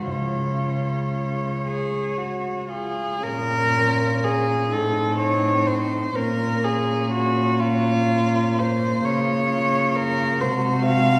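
A wet scoring-stage reverb, heard from further back in the room, surrounds this short lyrical classical passage for a cello ensemble, cut from a longer piece. It moves slowly in a rubato 6/8, at around 37 to 44 beats per minute counted in dotted quarters, and is tuned slightly low to A4 = 435 Hz. The piece opens in Db major and turns to Bb minor at 3.2 s, where the second section begins. Four bowed cellos, each played sul tasto with a soft attack, sound together throughout. Up front, the melody cello sings in its upper range with light vibrato, an airy bow and an intimate, warm tone, while two darker cellos with vibrato and smooth tops carry the second line and the accompaniment. Beneath them, the bass cello sounds pure and floating, set more distantly in the space.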